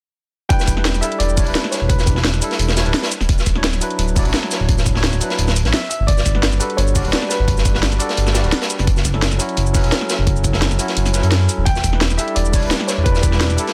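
Rolling and dreamy, this liquid drum and bass drop at 172 BPM in E dorian moves through Em7, Dmaj9, Gmaj7 and F#m7 as a clean tine electric piano with digital delay carries the chords and a dark, mellow grand piano, its action noise audible, plays brief melodic phrases. Underneath, a smooth, up-front sawtooth synth bass sits beside an overdriven, knocking electronic kick, a cracking drum and bass kit with hi-hat, shaker and snare, and a gritty, saturated breakbeat kit with high-passed hats and snare and a rolled-off top. An airy, breathy pad with chorus enters in the background at 12.3 seconds, all within a small room ambience and a dense, heavily limited master.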